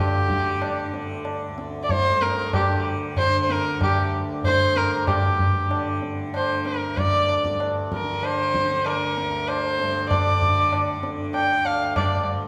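A straight 4/4 pulse at 95 BPM that gradually speeds up carries this introspective, longing Hindustani classical excerpt, where one player's nasal, earthy bowed sarangi carries the gliding melody up front with sympathetic strings over a buzzing, shimmering tanpura drone, while low-tuned, ringing, saturated tabla joins at 0.3 s and the music moves into a new section at 5.1 s, set in the long reverb of a concert hall.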